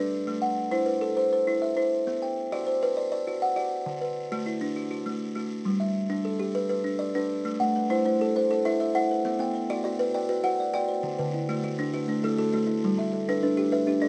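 A straight 12/8 pulse at 134 BPM in dotted quarters drives this hypnotic, trance-like fragment of southern African traditional music, an mbira-style interlocking cycle in A dorian that circles through Am, Bm, D and G twice. A buzzing kalimba sits up front from the start, its thumb-plucked arpeggios sounding woody, warm and vintage, with a hollow-box ring and a band-limited edge. At 7.6 seconds a second, quieter kalimba joins with darker, smoother tones and a slapback echo, all captured by close, detailed microphones in light reverb.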